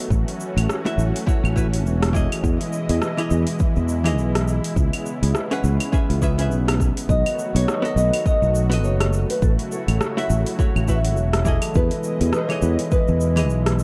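A growly, up-front fretless electric bass anchors this smooth, relaxed sunset chillout excerpt, joined by a deep overdriven electronic kick and a layered deep house kit of claves, metallic hi-hat, rim click and shaker with swung sixteenths, while a dark, clean hollow-body jazz guitar and a thick, nasal detuned sawtooth pad with chorus hold the chords throughout, and a thumb-plucked nylon-string guitar melody with finger squeak and a ringing background harp playing arpeggios, both touched by digital delay, enter at 7.1 seconds in a dark production with light digital ambience.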